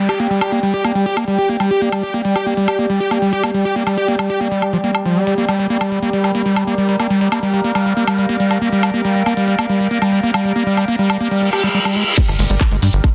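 A straight 4/4 pulse at 139 BPM drives this hypnotic, alien psychedelic trance excerpt in G minor, where a screaming, squelchy acid line with distortion, chorus and delay rides over an overtone-sweeping ring-modulated drone, a breathy background pad and a layered garage kit of handclaps, hi-hat, woodblock and crash, while a downlifter opens the passage, a reverse cymbal at 11.5 seconds leads to an impact at 12.2 seconds, and an up-front electronic kick and tight, punchy sequencer bass arrive at the end in a dense, heavily limited mix.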